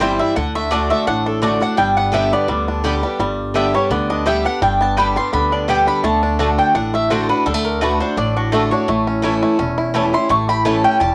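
Lightly swung eighths in 4/4 drive this joyful, lively bluegrass fragment, where a round, up-front mandolin carries the melody through a cassette-tape colour and breaks into a solo at 3.2 s. Beneath it, a boxy parlour guitar picks out the accompaniment, a twangy fingerpicked banjo rolls out percussive arpeggios, a second mandolin adds woody stabs, and a pizzicato upright bass holds down the low end. The whole piece has the homespun feel of a cassette home recording with light reverb.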